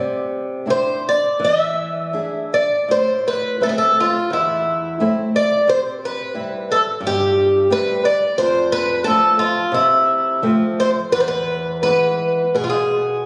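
The beat is uneven and elastic, pulled about in a rubato 4/4 feel that suits this mournful, passionate fado-style ballad, cut from a longer piece. A warm, fingerpicked flamenco guitar carries the accompaniment from the first moment, reaching from deep bass notes up into its high register while sitting back in the mix. At 0.7 seconds a picked twelve-string acoustic guitar enters up front with the melody, dark and boxy, its octave-doubled strings shimmering, with a swinging lilt and audible finger squeak. After a brief opening passage on Cadd9 and E7, the music moves at 2.9 seconds into a longer stretch that runs through Am, C, F and E. The sound is that of a phone capturing the players in a reverberant recital hall, with added studio reverb and compression giving a wet, lingering tail.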